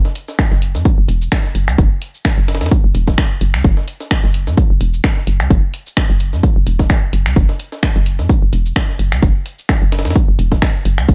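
Cool and clinical, this minimal techno excerpt runs at 129 BPM in 4/4 with a 55% swing on the sixteenths, built around a hollow, knocking FM bass that sits up front with a dark, bouncy attack and pumps against the sidechain. A punchy, tape-tinged electronic kick joins at 0.4 seconds, while a layered house kit adds finger snaps, hi-hat and shaker, re-recorded in a small room. Further back, a gritty, pitched-up breakbeat sampler kit supplies filtered hi-hats that pump with the sidechain and a compressed, medium-tuned snare, all in a dry mix with little reverb.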